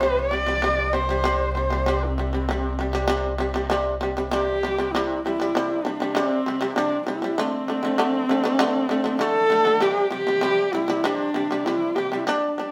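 This Mongolian folk piece in the traditional style, cut from a longer work, moves at 98 BPM in a straight 4/4 and carries a vast, proud mood in the C gong mode. A dark, husky horsehead fiddle, bowed on horsehair strings, carries the melody up front, its close and expressive line colored by vibrato and portamento. Beneath it, a bright, buzzing shamisen plays plucked arpeggios with a percussive, powerful edge, also placed near the listener. A reedy, gut-string double bass holds a bowed drone on a low C with light vibrato, then falls away at 5.0 s. The harmony rests on C, shifts to D at 7.4 s, and returns to C at 9.8 s. The band plays live in one room, and a wet studio reverb gives the sound a sense of space.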